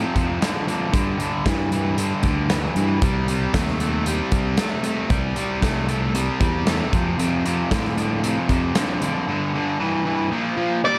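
A biting overdriven guitar and a bright, cranked stack guitar drive a gritty, swaggering classic rock riff at 115 BPM in a straight 4/4, moving through F5, G5, Cm, F and Bb in this excerpt cut from a longer piece. Underneath, a fingered electric bass plays until 8.7 s, and a big-room acoustic kit with a punchy kick, medium-tuned snare, hi-hat and a dark, rolled-off top sits up front until 9.1 s. At 10.8 s a distorted octave-fuzz lead guitar breaks in on a single high note, heard over light reverb and a studio ambience.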